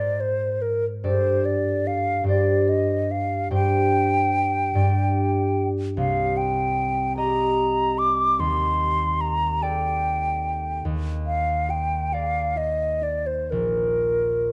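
Pastoral and luminous, this impressionist classical duo for flute and harp drifts at 49 BPM in dotted quarters, in a rubato 6/8 and tuned to A4 = 439 Hz. The concert flute carries the melody across a range of Bb4 to D6, its pure, hollow tone shaped by vibrato and tongued notes, and it sits up front. The concert harp accompanies beneath it, fingerpicked and mellow, its ringing strings reaching from a deep Bb1 to Eb5. Both instruments play throughout the 14.5 seconds, over a drifting progression that moves through Abadd9, Gmadd9, Cm7 and Ebmaj7#11 before settling on Bb. Close, detailed microphones and light reverb give the sound an intimate clarity, and the passage is cut from a longer piece.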